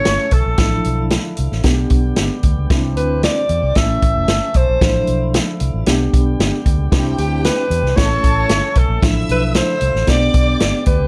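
A breathy alto saxophone carries the melody up front, its roomy tone trailed by a slapback echo, in this uptempo 1960s-style soul cut at 114 BPM in G mixolydian, danceable and warm. A punchy vintage drum kit drives the straight 4/4 beat with a dark, foam-muted electric bass, while a tine electric piano with medium tremolo accompanies and a lightly overdriven tonewheel organ with lush chorus holds sustained chords beneath. At 6.9 seconds a distant, bowed string section enters with a lush second line, sweetened by vibrato and portamento, all in a light reverb.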